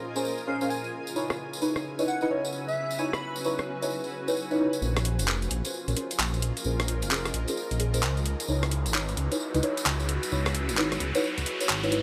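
UK garage in a two-step vein, this late-night, skippy excerpt is cut from a longer piece and swings its sixteenths with a relaxed lilt. It opens on an airy, breathy pad sitting in the background with chorus and phaser, beneath a cloudy, evolving granular pad wrapped in its own reverb, while deep, mellow chord stabs, soft and dark with chorus, phaser and dub echo, trace Bbm9 and Dbm9 harmonies alongside a jingly acoustic tambourine. A dreamy, bright lead with vibrato, chorus and dub echo floats briefly over the opening until 3.3 s, and a filter sweep on an analog synth pad colours this first stretch. The gritty, compressed sampler-style breakbeat kit arrives up front at 1.3 s with handclaps, hi-hat and rim click, its snare and hats darkened by low-pass filters and set in studio reverb. At 4.8 s a rumbling, detuned saw bass with audible beating enters up front and the music begins to build, with an electronic riser joining at 7.5 s, all carried in a lush hall reverb.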